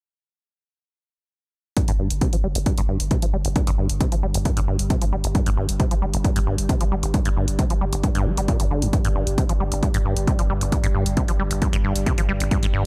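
A dry, gritty hardware sound with transformer saturation frames this intense, dark excerpt of driving peak-time techno at 134 BPM in a straight 4/4. From 1.8 seconds a heavy, tape-touched electronic kick sits up front beside an overdriven analog hi-hat, a thick saturated sub bass held on G1, and a squelchy, resonant sawtooth acid bass riff that runs through a filter sweep and analog delay, with sidechain pumping on the hats and both basses. At 3.4 seconds a moody, detuned ambient pad drone with chorus and its own reverb joins in the background, also pumping, and carries on to 12.9 seconds.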